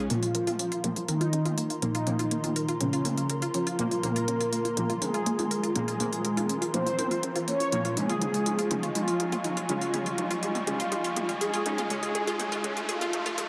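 A straight techno kit with smooth, tape-warm hats and toms drives this cinematic, building melodic techno excerpt, with a drum fill running throughout and a background riser entering at 4.7 s. A brassy, round synth-brass melody with vibrato leads over a deep, moody analog pad, while a detuned unison pluck plays background arpeggios and bright, punchy brass stabs punctuate the mix, both under filter sweeps; a very quiet, funky analog bass and an airy, dreamy second line sit underneath. The harmony shifts from Bbmadd9 to Dbadd9 at 8.0 s, all bathed in lush hall reverb and a dense, heavily limited modern master.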